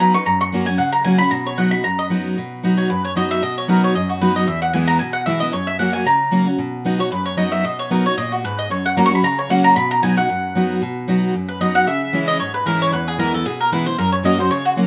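Lightly reverberant with a rough home-demo feel, this rustic, driving, swung bluegrass excerpt features a bright, round, double-strung picked mandolin carrying the melody and a picked steel-string dreadnought acoustic guitar in accompaniment, both up front, with the mandolin taking a solo from 10.8 seconds.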